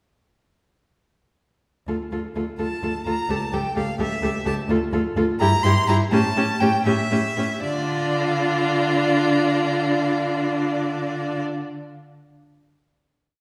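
At 1.9 seconds, a restless, stormy classical-period movement for string quartet opens in a straight 6/8, with a dark, woody second violin, a smooth, even viola and a focused cello starting together on repeated notes. The cello's bowed bass sits up front while viola and second violin fill in the harmony with vibrato, the second violin adding portamento and sustained chords. At 2.6 seconds, the first violin takes the melody, its clear, close tone carried high above the others. The harmony moves through minor and dominant-seventh colours as the music slows down, settling at 7.6 seconds onto a final sustained chord that holds until the piece ends. The quartet sounds as if heard from further back in a reverberant scoring stage, giving the whole short piece a spacious, shadowy atmosphere.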